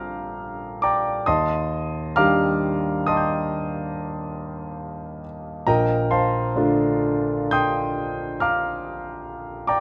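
Classical impressionist solo piano in Bb major, this short excerpt drifts at a rubato pace between 58 and 74 BPM in an unusual 5/4 metre, its mood dreamy and luminous. A single concert grand carries everything, spanning from a deep Bb1 in the bass up to a gleaming G6, with a warm, intimate tone and long sustain that lets each chord bloom. The harmony moves from Bb6/9 to Ebmaj7 at 1.3 seconds and settles onto Bbmaj9 at 5.7 seconds, lush extended chords that give the passage its hazy glow. The piano sits up front and present, its polished sound close enough that the noise of the instrument's action is audible. A moderate recital hall reverb, with a 1.3-second decay, surrounds the instrument in a gentle halo of air across the roughly ten seconds heard here.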